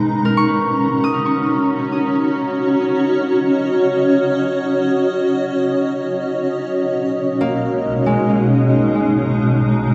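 A blurred, detuned granular cloud pad sits up front with mellow sustained chords moving from Bmaj9 to G#madd9/B at 6.6 seconds, while a ringing, fingerpicked concert harp with tape echo plays arpeggios alongside it, giving this free-time ambient passage in B major a weightless, luminous feel within a dreamy mix soaked in huge reverb.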